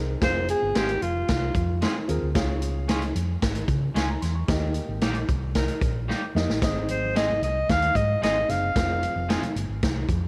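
A breathy alto saxophone with light vibrato carries the melody up front in this brief excerpt of uptempo 1960s-style soul at 112 BPM, sounding a short phrase at the start and returning at 6.9 seconds. Underneath, a round, amped hollow-body electric bass and a dark, woody upright piano move through Fm, Db, Eb and Ab. A swinging big-band drum kit with a punchy kick and medium-tuned snare sits prominently in a big, natural-sounding room. A slightly broken-up, twangy electric guitar adds stabs in the background, and a distant, tight horn section slips in a fleeting second line during a band accent that also carries a short drum fill. Very quiet congas played with soft hands join at 6.6 seconds, and the joyful mood is framed by light reverb, small-room ambience and tape saturation, with tuning at A4 = 439 Hz.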